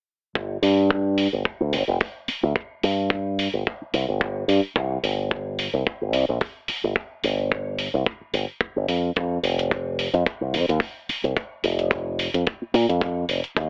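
A punchy fingered electric bass with an envelope filter sits up front in this groovy, sleek nu-disco excerpt at 109 BPM in G minor, entering at 0.4 s alongside a tight, airy acoustic kick drum that is also placed up front. A layered, tape-warm electronic hi-hat, re-recorded in a large room, joins at 0.6 s, and the groove carries a 16th-note swing. The whole sound is dry and gritty, with a cassette-tape and telephone-like character.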